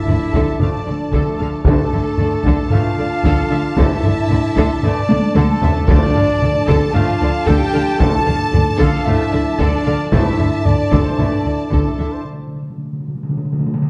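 A dark, lush orchestral sound fills a scoring stage with moderate reverb in this epic, heroic cinematic excerpt in a straight 4/4, built on a D minor chord that shifts to Asus4 over D near the end. A warm violin section carries the melody on a focused, bowed line with vibrato, while a second, richer violin section and a smooth viola section add supporting lines in the background. A woody double bass section and a studio cello section hold the low end, as a pipe organ on soft flute stops with tremulant and a soft-attack French horn section sustain chords beneath, joined by a very quiet, clear trombone section. A mellow solo trumpet adds stabs, and a distant taiko ensemble struck with hard sticks drives the piece, with a drum fill around 5.1 seconds. Timpani with soft mallets and round calf heads punctuate the music, then take a closing fill alone in the break from 12.2 seconds.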